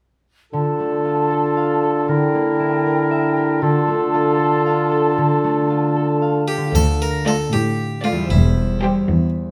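This whimsical cinematic film cue moves at 77 BPM in a lilting 6/8 in D minor, with a mischievous, sneaky mood. From 0.5 s a woodwind group opens over a ringing, fingerpicked concert harp playing arpeggios up front. A bright clarinet, an airy, hollow small flute group with crisp attack and a distant, roomy oboe share a second line above a warm bassoon holding D3. The harmony moves from Dm to Em7b5/D and back. At 6.5 s a plucked, French-style harpsichord takes the melody as the winds stop, and bowed string sections played sul tasto gather beneath it: a dark double bass section, a close, floating cello section, a woody viola section with vibrato, and rich violin sections on melody and second line, with a faint, close and dry triangle in the background. A wet stone room reverb surrounds the whole ensemble, and the passage turns to C/E before breaking off, since it is cut from a longer piece.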